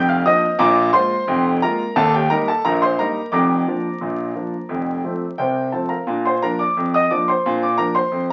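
The sound is that of a very old 78 rpm record, with vinyl crackle, a dulled top end and a wet studio reverb around a clear, up-front concert grand piano. This short ragtime fragment in Bb major moves at 88 BPM in a straight 2/4. The solo piano spans from deep bass to bright upper notes with long sustain, and it passes from Bb through Eb and F before a new section begins on Bb at 6.1 seconds, keeping a playful, jaunty mood throughout.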